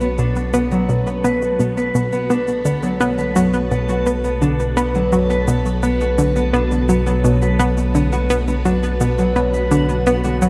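Ambient, sequencer-driven space music with an expansive, hypnotic mood, in a steady, straight four-beat pulse, heard here as a short excerpt from a longer piece. A phased string machine fades in across the whole passage, holding swirling, vintage chords with a warbling ensemble chorus and phaser. A fingerpicked concert harp rings out arpeggios up front through tape echo, while a deep sine sub bass sustains a single round low note. At 0.2 s, a bright analog pluck joins with a warm, round, filtered sawtooth-and-square riff thickened by a sub octave, chorus and tape echo. Dry, tape-warm cabasa and congas sit low in the mix, and a twinkling granular texture with an FM, octave-up shimmer sparkles in the background. A lush plate reverb with a long tail bathes the whole arrangement, lending it a spacious, drifting sound.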